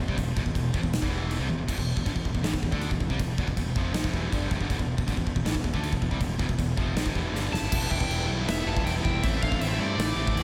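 A straight 4/4 pulse drives this relentless, aggressive heavy metal excerpt at 159 BPM in E phrygian, cut from a longer piece and sitting on E minor before moving to A minor at 9.2 seconds. A big acoustic rock kit sits up front with a punchy kick, medium-tuned snare, toms, and bright crash and china cymbals in an airy stone-room sound, with drum fills at 1.5 seconds and just before 7.7 seconds. Two picked electric guitars play riffs in the background from the start, one distorted and compressed, the other overdriven, both with slapback echo. A fuzz-laden fingered bass, direct and amped with overdrive, holds the low end beneath them. At 7.5 seconds a dark, high-gain lead guitar enters with a high melody, joined by a very quiet second lead line lower down, while a double-tracked, biting overdriven rhythm guitar adds a faint riff from 7.7 seconds. A moderate recital-hall reverb gives the mix a big arena sound.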